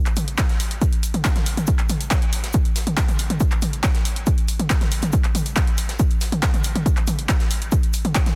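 An overdriven analog drum machine opens this dark, relentless techno excerpt at 139 BPM in a straight 4/4, its handclaps, hi-hat and toms up front and pumping against the sidechain on the hats and toms. A dry, punchy electronic kick drives up front from 0.4 seconds, while a very quiet, airy acoustic kit with hi-hat, shaker and a medium-tuned snare sits in a small room far behind. The sound is close and nearly free of reverb, with a dense, heavily limited modern master.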